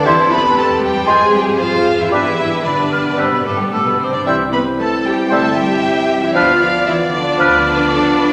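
A fast 4/4 pulse at 115 BPM, pushed and pulled with rubato, drives this spirited, cheerful romantic orchestral fragment in C major, cut from a longer piece and running about 8.3 seconds. An intense chamber violin section carries the melody with vibrato, while a focused symphonic violin section sits in the background on a second line, joined by a pure, hollow wooden flute with a crisp attack high above, a soft-edged oboe, and a distant, very quiet clarinet. Smooth-topped violas and a light-vibrato bassoon fill the accompaniment, a ringing harp adds very quiet arpeggios, and a rich cello section and focused double basses anchor the bass. A tight, mellow French horn section enters at 0.1 seconds with sustained chords that shape a progression moving from C/E through Fm and G to C, then Bdim/D. The woodwinds drop out at 7.6 seconds as the strings and horns carry on, all bathed in a wet scoring-stage reverb.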